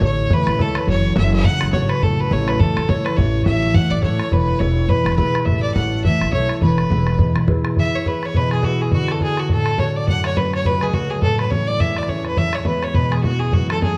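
A swung 4/4 pulse at 209 BPM drives this cheerful Celtic reel in E mixolydian, where a biting, intense fiddle with light vibrato carries the melody up front over ringing, thumb-plucked concert harp, a boomy, saturated bodhran, and a woody, thumpy pizzicato upright bass that drops out at 7.6 s, the whole recording wrapped in moderate recital-hall reverb and the warbly pitch drift of worn old cassette tape.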